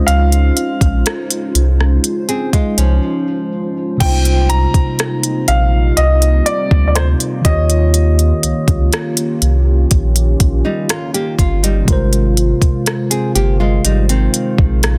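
Contemporary R&B at a slow 61 BPM in C phrygian, this longing, sensual excerpt sets a natural-toned baby grand piano melody with delay over mellow, clean tine electric piano through a phaser and a deep, moody ambient pad with chorus and built-in reverb, moving through Dbmaj7, Cm11, Eb9 and Ab6. A full, sine-like sub bass with octave and a soft-kicked electronic drum kit with smooth hats and rim clicks sit up front, and after a break at 3.0 seconds the piano melody stops at 8.9 seconds. A fingerpicked nylon-string guitar adds delayed classical arpeggios in two passages, the second running from 10.6 seconds to the end, all within a dry, dense, heavily limited modern master.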